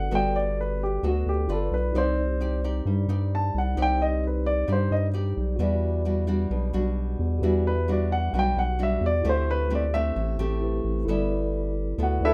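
A straight 4/4 bossa nova groove carries this relaxed, sunny excerpt, with a round, deep analog bass sitting up front and a fingerpicked nylon-string guitar adding classical touches and audible finger squeak. An intimate grand piano takes the lead as a solo throughout, its natural tone showing a little action noise, while a mellow, clean tine electric piano fills in the harmony behind it through moving chords such as Gmaj9, Cmadd9, Em9 and D7sus4 before settling on G69. Light reverb gives the rough home-demo mix a cozy sense of space.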